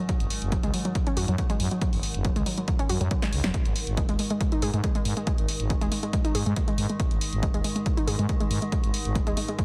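An up-front, punchy electronic kick drum drives this relentless, intense slice of peak-time techno at 139 BPM in a straight 4/4, its analog character carrying the weight of a large room. Beneath it, a growling, thick FM bass holds sustained low notes, pumping against the kick, while a punchy analog drum machine supplies hi-hat and snare, and a brief drum fill arrives from 3.2 to 3.5 seconds. The riff comes from a warbly, dusty pluck with a lo-fi, mellow edge, its short, snappy notes colored by chorus, tube saturation, digital delay and sidechain pumping. Far back in the mix, a metallic, inharmonic drone with an eerie, nasal tone swells in slowly and lingers, shimmering with chorus and its own reverb as it also pumps with the kick. The harmony moves from F#5 to G#5 at 3.5 seconds, and the whole track sits in light digital ambience with a heavily compressed, radio-like sound, cut from a longer piece.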